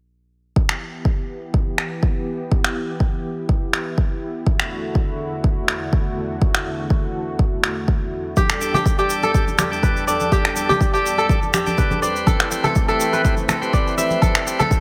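Up front, a bright, crisp kora rings out in fingerpicked arpeggios from 8.4 seconds, its notes carried by tape echo and a pumping sidechain, lifting this earthy, warm afro house cut from a longer piece. Beneath it, a smooth, detuned sawtooth pad holds sustained chords through Em and D/E to Am7/E, thickened by chorus and tremolo, pumping against the beat, with a filter sweep running across the whole span. A deep, layered electronic kick and tape-warm finger snaps, re-recorded in a small room, sit up front from the opening, the kick at 0.6 seconds and the snaps just after, with a gentle swing on the sixteenths. At 8.6 seconds a full, shouting tonewheel organ adds lightly overdriven stabs through a stopped rotary speaker, also with tape echo and sidechain pumping. Damped, thick-skinned congas played with soft hands sit in the background alongside a grainy egg shaker, all within a light studio reverb and a faint mains hum.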